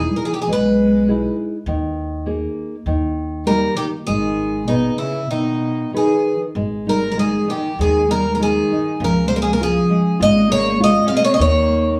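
A shimmering, octave-doubled twelve-string acoustic guitar sits up front, its fresh strings picked on an archtop body as it carries the melody through this mournful, passionate fado-style ballad. Alongside it, a single bowed cello plays a dark second line, played sul tasto with vibrato for a woody, intimate voice. A thumb-plucked classical nylon-string guitar fills in the accompaniment beneath them, while an upright bass on steel strings adds a warm pizzicato foundation at the bottom. The rubato feel lets the phrasing breathe over a harmonic-minor progression that opens on Emaj7, passes through suspended and minor colours, and shifts into a new section at 6.6 s. The band plays live together in one small room, with wet studio reverb adding depth. This excerpt is cut from a longer piece, with the cello stopping at 11.9 s and the rest of the group playing to 12.0 s.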